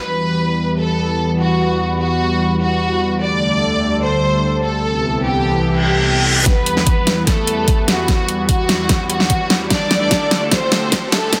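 Dense and heavily limited, this short cut from a longer heavy wobble dubstep track sits in a moderate digital room reverb. It moves at 148 BPM in a half-time 4/4 feel in E minor, with an aggressive, heavy mood. A thick, detuned unison pad built from sawtooth and square waves holds sustained chords throughout, moving through Em, Dsus4 and Amadd9/C, with slow attacks, long releases, chorus and sidechain pumping, and a filter sweep runs across it through the opening stretch. Over it, a smooth, bowed studio violin section carries the melody with vibrato, its distant ensemble tone roughened by vintage 12-bit sampler grit, a low-pass filter and tape echo. A reverse cymbal and riser slip in quietly in the background at 5.8 seconds. At 6.5 seconds the drums enter for a build-up and fill: an overdriven, knocking electronic kick, a huge snare and metallic, tape-warm hi-hats pushed up front, as the chords return to Em and then Dsus4.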